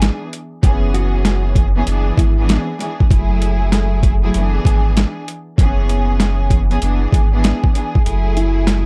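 Tough and dark, this boom-bap hip-hop excerpt at 97 BPM swings over gritty, overdriven sampler drums with a thumpy kick that drops out from 8.1 to 8.7 seconds, a round sine sub bass, a lush bowed string section colored by cassette tape, and a mellow, clean electric guitar in the background with tape echo that enters at 0.9 seconds, all moving through E7, C#m7/F# and F#m9 in a dry, dark production.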